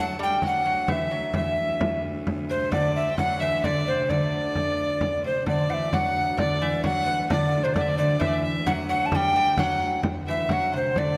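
A hollow, airy alto recorder with tongued chiff and vibrato carries the melody up front in this festive, ancient-sounding medieval dance in D mixolydian, moving at 131 BPM in a straight 3/4. Beneath it, an earthy, distant bowed fiddle and a bright, delicate fingerpicked lute with doubled gut strings supply second lines, while a close, reedy viola da gamba holds a ringing drone on D. A deep frame drum played with soft hands joins at 0.4 seconds, dry and near, and the whole excerpt, cut from a longer piece and repeating its opening section at 5.5 seconds, sits in the wet bloom of a concert hall.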